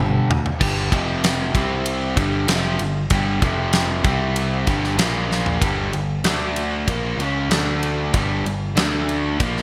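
A dark, double-tracked overdriven electric guitar sits up front with a swaggering power-chord riff that moves through G5, F5 and C5, then shifts toward D5 and a Bbm7 after 5.6 seconds in this anthemic hard rock fragment at 96 BPM in 4/4. A growling, bright picked bass with its own overdrive runs underneath. A big acoustic drum kit enters at 0.3 seconds with a fat snare, tight kick, crash, ride and toms, all bathed in gated reverb, and a fill at 5.3 seconds leads into the second section, all within a bright 1980s-style digital sound and a touch of small-room reverb.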